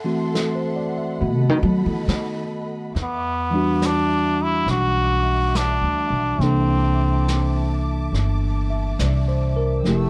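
A dark, dry production frames this wistful, melancholic jazz ballad in E minor, a slow 70 BPM swing cut from a longer piece. A bright, bell-like tine electric piano and lush bowed symphonic strings open together, joined at 0.4 seconds by a distant, roomy brush kit and at 1.2 seconds by a woody, thumpy pizzicato upright bass placed up front. From 3.0 seconds a buzzy, metal-muted trombone carries the melody, close-miked and forceful, with light vibrato and scooped notes.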